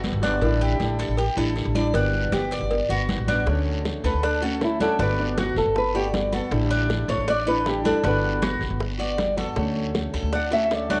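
Sunny and warm, this short cut from a longer piece sits in Cuban son and guajira territory, moving at a brisk, straight pulse. A fingerpicked parlour steel-string acoustic guitar with a boxy tone lays down the accompaniment while a Cuban tres, its doubled metallic strings picked in arpeggios, rings out through a slapback echo. Up front, a woody, growly pizzicato upright bass thumps out the low end, and in the background ringing congas played with soft hands join tight, high-tuned cowbell and bongos, with a raspy guiro scraping along underneath. At 4.1 seconds a dark, small-sounding nylon-string guitar enters up front with a fingerpicked solo melody, also carrying a slapback echo, as the harmony cycles through A7sus4, Gmaj9 and Dmaj7. A light small-room reverb gives the ensemble an intimate, acoustic feel.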